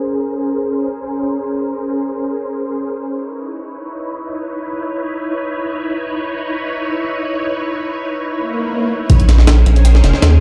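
Nostalgic and frenetic, this drum and bass and jungle excerpt in free time opens with a silky, warbling soft string machine holding sustained Bbm9 and Dbm9 chords through ensemble chorus and vintage 12-bit sampler grit under a filter sweep. An electronic swell enters at 8.4 seconds, and at 9.1 seconds the drop lands with a deep, saturated sub bass and a pitched-up, gritty breakbeat sampler-style drum kit with thumpy kick, medium-tuned snare and hi-hat. Everything is set in a large plate-reverb space that sounds like a big sound system in a bare room.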